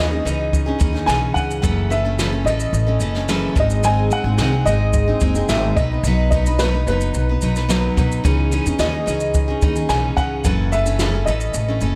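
A straight 4/4 pulse from a distant, roomy brushed drum kit with boomy kick, snare and shaker carries this reflective, tender acoustic pop fragment, where a full-bodied, up-front picked dreadnought guitar with tape echo and a woody pizzicato upright bass support a dark, worn upright piano melody, slightly detuned and boxy with audible action noise, short sustain and its own tape echo, set in light reverb and an echo-heavy mix over chords moving from C#madd9 through F#m7, G# and B.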